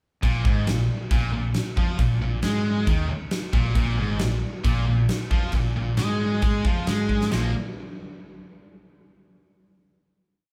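A live band in a large studio room, caught with moderate reverb, plays this short, menacing hard rock piece at 135 BPM in straight 4/4. From 0.2 seconds, an overdriven hollow-body guitar and a bright, scooped high-gain guitar each play a single-note riff over a Bb5 chord, while a growly picked bass drives eighth notes doubling the guitar riff and a huge arena kit sits up front with a fat snare, punchy kick and crash cymbal. A drum fill at 7.1 seconds leads into a final chord that closes the piece at 9.1 seconds.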